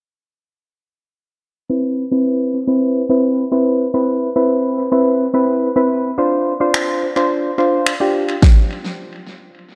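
This dance-pop excerpt moves at 107 BPM in a straight 4/4 in C major, with a euphoric, carefree mood. Soft electric-piano-like synth keys carry the accompaniment from 1.7 seconds, a round, warbling, vintage tone sitting up front with chorus, sidechain pumping, tape echo and a low-pass filter that sweeps through the passage. The keys move from Cmaj7 to Dm7 at 6.2 seconds within a compact register. A pop drum kit of finger snaps, a punchy kick and a fat snare enters at 6.7 seconds, electronic and layered, placed up front and carrying its own tape echo. The mix is echo-heavy, bathed in a moderate echo chamber reverb that gives the short passage a sense of spaciousness.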